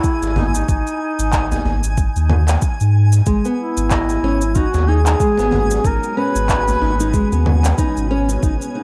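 Organic downtempo with a meditative, mystical mood, moving at 93 BPM in 4/4 with a swung sixteenth-note feel, this excerpt is cut from a longer piece. A mellow, distant duduk carries the folk-style melody up front, its vibrato and scooped notes trailed by digital delay. Underneath, a round sine sub bass sits close and deep, while a soft, overdriven electronic kick joins overdriven electronic shaker, congas and handclaps that sound re-recorded in a small room. A djembe with metal rattles, struck with hard hands, sits in the background of a large room, and a twinkling FM granular texture sparkles high on G#5 with an octave-up shimmer and its own reverb. A dark, fingerpicked nylon-string guitar enters with arpeggios at 3.3 seconds, finger squeaks audible, as the harmony settles on a rootless E over G#. At 4.5 seconds a cloudy, detuned granular pad blooms in the background with a slow attack, long release and sidechain pumping, all within a light overall reverb.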